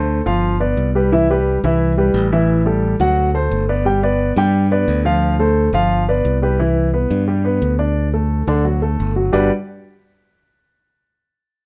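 A brisk, straight 4/4 pulse at 175 BPM drives this short Afro-Cuban jazz excerpt in G major, cut from a longer piece and carrying a sophisticated, danceable mood. A concert grand piano provides the accompaniment from D3 to G5, its intimate, vintage character coming through with audible action noise, deep lows and a smooth finish. A modern fingered electric bass holds down the bottom between G1 and G2 with a bright, growly, direct sound. Both parts sit up front and play together from the start until 9.5 seconds, moving through changes such as G7, Cmaj7, D7 and Dm7 before a new passage opens on Cmaj9 at 6.6 seconds and settles onto Gmaj7 at 9.3 seconds. Close, detailed microphones and a light reverb give the recording a clear, present sound.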